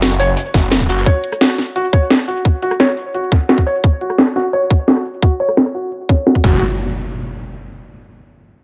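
Mechanical and futuristic, this dark technical drum and bass excerpt at 173 BPM sets the arpeggios of a soft, intimate felt-muted upright piano, with audible action noise, sidechain pumping, tape echo and a filter sweep, over an up-front drum and bass kit with a cracking snare, bright hats, cabasa and rim click that also carries a filter sweep, an overdriven electronic kick from 0.5 seconds, a gritty, saturated breakbeat kit tucked in the background, and brief growls of a snarling, detuned saw bass at the start and again at 6.4 seconds, where an electronic impact lands in a small, lightly reverberant room.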